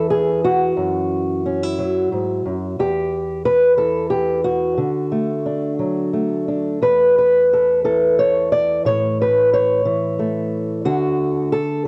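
A lone fingerpicked acoustic guitar opens this short folk fragment, an old ladder-braced instrument whose boxy, woody body and dark, worn strings sit up front in the sound. The mood is warm and nostalgic, with the playing moving in a loose, rubato triple metre. Across its range from E2 to D5, the guitar drifts from an opening free of chords through a rootless C#madd11 over F#, then settles into D, E7sus4 and A before returning to D at 10.8 seconds. A cassette tape coloring clings to the guitar, and a touch of studio reverb surrounds this homespun recording. Cut from a longer piece, the passage lasts just under 12 seconds.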